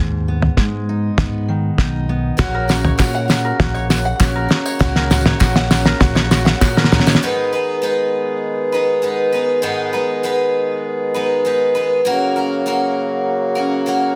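This anthemic indie folk excerpt at 99 BPM in 4/4 opens with an up-front fingerpicked steel-string acoustic guitar and a round, punchy fingered electric bass. A cloth-damped, thuddy drum kit joins almost at once, with a fat snare, tight kick and a dark, rolled-off top, sitting prominently in the mix while a drum fill drives the opening build-up. At 2.4 seconds the first guitar gives way to a bright, shimmering twelve-string acoustic guitar, and a reedy, breathing pedal harmonium settles in with mellow sustained chords. A light ukulele adds arpeggios with slapback echo, while a jingly tambourine and crisp, band-limited group handclaps sit in the background. By 7.3 seconds the bass, drums, ukulele and hand percussion have fallen away, leaving the twelve-string and harmonium to carry the second section as the harmony moves from G#m to F# under light reverb and a dense, heavily limited master.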